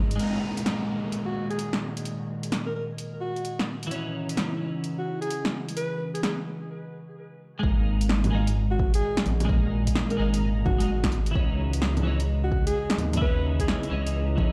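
A big, reverberant sound fills this short cut of ghostly, rainy future garage, as if played on a large system in a bare room, with a studio reverb lingering around the parts. At 129 BPM in 4/4 with a swung sixteenth-note feel, a warbling, lo-fi pad holds dark, nostalgic sustained chords that move between G#sus2 and C#madd9, its chorus and reverb softening the edges while sidechain pumping makes it breathe. A bright, twangy twelve-string electric guitar picks a clean, compressed accompaniment through chorus and delay, and an overdriven deep house kit keeps a punchy snare, hi-hat and bongos up front, with a brief electronic downlifter sweeping through the opening seconds. From 1.3 seconds a warm alto saxophone carries the jazz-style solo melody with vibrato, roughened by 12-bit sampler grit and trailed by dub echo. After a break at 6.7 seconds, the second section at 7.6 seconds brings in a deep, overdriven electronic kick and the return of a rumbling, detuned sawtooth bass, saturated and pumping beneath the rest.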